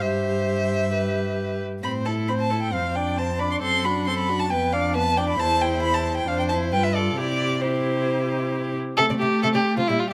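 A string quartet opens together in a quick, graceful classical-period movement with a cheerful air. The bowed first violin sits up front, carrying the melody high in its register with a rich, vibrato-laden tone and expressive portamento glides. Beneath it the second violin plays an even, smooth second line with a silky top. The viola's accompaniment has a warm tone with vibrato and portamento of its own, while the cello, also close and up front, anchors the bass with an airy sul tasto sound, soft attacks and light vibrato that give the low end an intimate feel. The harmony settles on C at 7.2 seconds, a new section begins at 9.0 seconds, and the cello stops at 9.9 seconds, just before this short extract from a longer piece ends. Close, detailed microphones and light reverb keep each bowed line clear.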